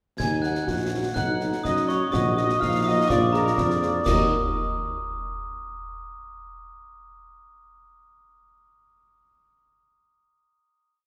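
A very short, stern and martial wind-band march in two opens at once with trumpet section, euphonium, glockenspiel, tuba and a percussion trio of concert snare, clash cymbals and concert bass drum. The distant, dark trumpet section carries the melody in classical style, while the bright, sparkling glockenspiel, struck with hard plastic mallets and ringing up front, doubles the tune at the octave. A clear euphonium with vibrato sings a solo counter-melody until 3.8 s, and a warm, up-front tuba holds down the bass on the beats with sustained notes. The French horn section joins at 0.4 s with very quiet after-beat and sustained chords in the same shadowed, distant colour, set in a reverberant hall. The close, dry percussion lays a marching snare over a bass drum on the beat, the cymbals sounding dusky, and the ensemble settles on a final minor chord at 4.1 s.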